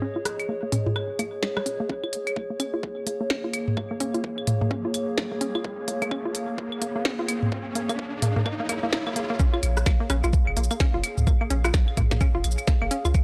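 A swung 128 BPM groove in 4/4 drives this cool, hypnotic minimal techno passage in Bb minor, built from a tiny-snare, clicky-hat kit with cabasa, a booming analog drum machine adding claves, rim clicks and toms, and an overdriven, knocking electronic kick that lands up front at 1.9 seconds. A hollow, bouncy square-wave pluck riff pumps alongside a warbling, nostalgic lo-fi pad with chorus and phaser, both hovering on a single Bbm7 chord. A deep, punchy sine sub bass sits out the build-up, while a riser climbs until the drop at 9.4 seconds, all in a dry, gritty recording with light digital ambience.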